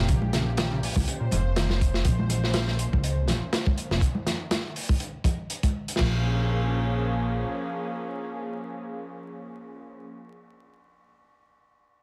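Energetic and funky, this swung 122 BPM breakbeat excerpt opens in a drop on Bb minor. A gritty, saturated breakbeat kit with dark cymbals and a tight kick drives the track up front beside a woody, growly pizzicato upright bass. Soft-handed congas sit bright in the background, and a round, dark dub electric bass riff with overdrive, 12-bit sampler grit and dub echo plays only until 1.6 seconds. Underneath, a lush, nasal, detuned sawtooth pad with chorus and sidechain pumping holds sustained chords, shifting to Bbm7 at 6.0 seconds as the drums stop at 6.1, all over small-room ambience and vinyl crackle.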